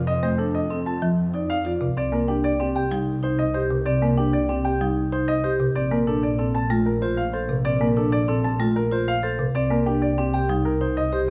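A brisk 190 BPM pulse in 6/4 with a straight feel drives this propulsive, hypnotic excerpt of minimalist classical pattern music, moving through F7, Cm, Bbmaj7 and Cm7. A natural, up-front grand piano carries the melody over ringing, metallic vibraphone arpeggios played with medium mallets and the motor off, while a dry, woody folk marimba on hardwood bars adds rustic accompaniment until it stops at 10.7 seconds. Beneath them, a rich, bowed chamber double bass section sings with expressive vibrato, all set in a moderate recital hall reverb captured by close, detailed microphones.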